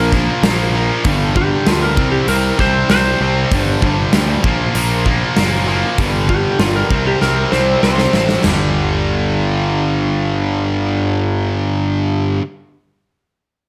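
Heavy and driving, this hard rock passage cut from a longer piece opens with a slightly broken-up, compressed lead guitar soloing with slapback echo over two picked rhythm guitars, one overdriven and one high-gain, plus a dark, round, fuzzy bass sitting up front. A big acoustic drum kit with a punchy kick, medium-tuned snare and bright cymbals drives the groove, closing the solo with a fill from 7.2 s to 8.4 s. After the lead and drums drop out, the guitars and bass carry on to 12.4 s, all set in a moderately large studio reverb.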